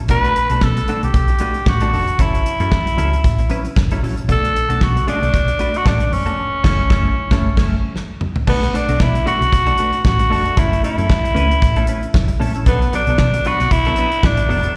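A driving 114 BPM disco groove in 4/4 with a light 16th-note swing underpins this sultry B minor excerpt, where an up-front, raspy tenor saxophone with slapback echo carries the melody over a clean, compressed semi-hollow guitar with chorus and echo, a round, punchy hollow-body bass and a damped 70s drum kit with a fat snare and dark cymbals, all heard live through a venue's PA in recital hall reverb as Bm7 and F#m7 alternate, with a band accent from 6.4 seconds and a drum fill at 8.0 seconds leading into the next section.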